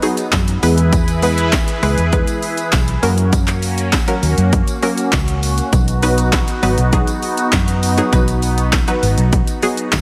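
A dark, round, foam-muted electric bass sits up front with an amped tone, arriving at 0.3 seconds and riding a sidechain pump through this summery, euphoric dance-pop excerpt at 100 BPM in B major. Beside it, an overdriven analog drum machine drives the straight 4/4 groove with a punchy kick and snare, handclaps, hi-hat and shaker, the snare, clap and hats given a short room. Detuned sawtooth and square-wave chord stabs with a filter pluck, fast attack and chorus pump along over a mellow supersaw swell whose airy, evolving unison layers, noise and moving notch unfold slowly beneath. A very quiet, jingly tambourine, close and dry, joins at 0.2 seconds. The harmony moves from B to E, then F#, and back to B, all under a light reverb.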